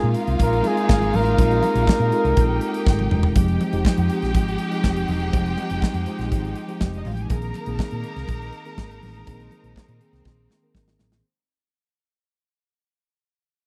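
A dry, close 1970s-style studio sound frames this driving, glamorous disco excerpt in F minor at 122 BPM, where a breathy, up-front flugelhorn with vibrato carries the melody only until 3.1 seconds over a mellow tine electric piano, a round, punchy hollow-body electric bass and a polished drum kit with a punchy kick and medium-tuned snare. A lush, distant violin section weaves a second line above floating, sul tasto string chords, while very quiet, damped congas sit beneath, and the harmony moves from Fm9 to Bb9sus4 at 7.3 seconds. Drum fills mark the turn into the second section at 2.9 seconds and close it at 10.3 seconds, as the whole piece fades out from 3.4 seconds onward.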